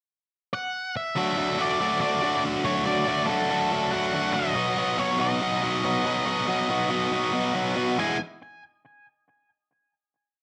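Bathed in a moderate large-studio reverb, this sunny, confident rock piece at 140 BPM opens with a dark, fuzzy octave-fuzz lead guitar at 0.5 s playing a picked, motif-based melody in balanced phrases, joined at 1.2 s by a biting, double-tracked overdriven guitar that sits up front driving eighth-note open chords through the pre-chorus before landing on a final chord at 8.0 s.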